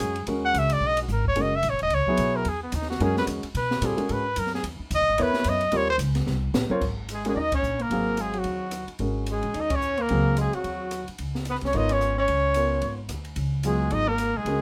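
Modal jazz in a brisk 220 BPM swing in 4/4, spiritual and hypnotic, cut from a longer piece: an up-front, punchy trumpet carries the melody with vibrato and scooped notes over an intimate concert grand piano with audible action noise, woody pizzicato upright bass, and an open drum kit with dark cymbals, a high-tuned snare and a boomy kick. The trumpet solos over the band until a drum fill at 6.3 seconds leads into a shift to Ab mixolydian at 6.8 seconds, and a breathy, close-miked tenor saxophone with subtone joins as a second line at 7.1 seconds. The chords move from Bmaj9 and Emaj9 to D#7, then settle on Ab13sus4 and Db7sus4, with band accents punctuating the passage under light reverb.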